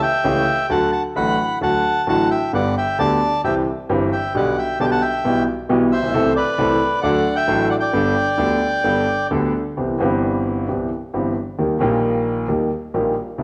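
Set in 4/4 at 132 BPM, this tango moves with a rubato feel, its pulse stretching and easing in a playful, elegant mood. A reedy, band-limited bandoneon carries the melody up front, while a concert grand piano with deep bass and a smooth tone supplies the accompaniment, both carrying a vintage character. The harmony sits in G major and moves through familiar turns before a new passage at 9.8 seconds opens onto Cmaj7 and then drifts to an unexpected Eb. The bandoneon stops at 9.3 seconds, leaving the piano alone to carry the closing bars. The players sound as though they are performing live together in a stone room, whose wet reverb gives the sound a lingering, resonant space. The recording is cut from a longer piece.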